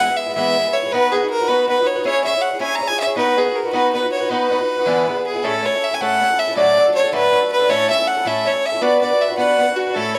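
Cheerful and rollicking, this short cut from a longer Celtic folk jig moves at 106 BPM in 6/8, starting in B major and shifting to A major at 5.4 s. A single bowed fiddle carries the melody up front with a rich, earthy tone, light vibrato and a smooth top. Beside it, a fingerpicked twelve-string acoustic guitar accompanies with a boxy, shimmering, octave-doubled sound, a swing feel and audible finger squeak, both parts set in a wet studio reverb.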